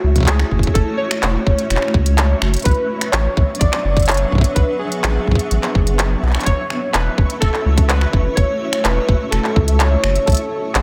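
A tight, up-front electronic kick drives this intricate, cerebral IDM fragment, entering at 0.2 s beside a glitchy kit of clicky hi-hats, finger snaps and handclaps, both given a tape-warm character and re-recorded in a large room. Underneath, a round, deep sine sub bass with a fast attack and tube saturation sits prominently in the mix, sustaining its notes. The melody comes from warbling, nostalgic lo-fi synth keys, a detuned blend of triangle and sawtooth with a filter sweep and decaying notes, colored by chorus, phaser and delay. A cloudy, evolving granular pad holds sustained chords in a bright, blurred haze with a moving notch and its own reverb. In the background, a grainy, flickering texture adds a mellow shimmer over a light room reverb, in a straight 4/4 groove cut from a longer piece.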